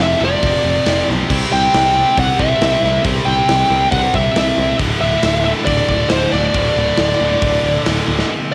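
Driven by a straight 4/4 pulse from a big rock drum kit, with punchy kick, medium-tuned snare, hi-hat, toms and bright crashes, this swaggering, anthemic hard rock excerpt moves with brisk confidence and closes on a drum fill at 8.1 seconds. Three distorted rhythm guitars, one heavy and double-tracked, one scooped and one tight, play riffs in the background, each colored by cassette tape. A modern picked electric bass adds a growly, direct low end beneath them. Up front, a smooth overdriven lead guitar carries the melody with a warm tone, dressed in plate reverb, tape echo and cassette saturation. The chords move from F5 to C at 1.3 seconds and on to D5 at 4.8 seconds. The whole passage has the moderate ambience of a booth, captured as a home recording on cassette.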